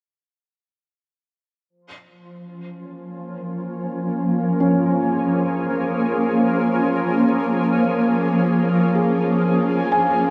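Ambient piece in free time and B-flat minor, reflective and spacious, resting on a single Bbm7 chord in this excerpt cut from a longer work. A shimmering, ethereal pad enters up front at 2.6 seconds with sustained chords and a slow, granular octave-up glow treated with chorus, joined at 3.5 seconds by a very quiet, string-like bowed drone with a tense, detuned edge and vibrato. From 4.6 seconds a felt-muted upright piano adds soft, intimate arpeggios through tape echo, the whole bathed in a cathedral reverb with a 6.5-second tail and the hazy grain of cassette tape.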